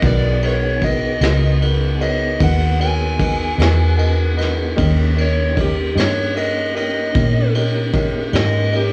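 Slow, mournful blues in G# minor at 51 BPM in a smoky 12/8, with an overdriven slide guitar soloing over G#m7 and D#7 chords, its tone carrying a slapback echo. A woody upright piano with long sustain accompanies, while a tonewheel organ holds chords in the background through a slow rotary speaker and chorus vibrato. A dark, round, foam-muted electric bass and a muffled brush kit with punchy kick sit up front, all heard through worn, warbling cassette tape with small room ambience in this short excerpt cut from a longer piece.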